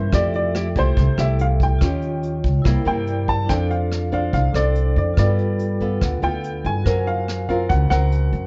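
A dry, dark and intimate mix frames this relaxed, sophisticated bossa nova excerpt, where a mellow baby grand piano carries the melody with audible action noise over fingerpicked nylon-string guitar with finger squeak, a ringing, metallic vibraphone with fast motor vibrato that adds a brief fill at 2.9 seconds, a woody, thumpy pizzicato upright bass sitting up front, and a vintage brush drum kit with a punchy kick, hi-hat and rim click.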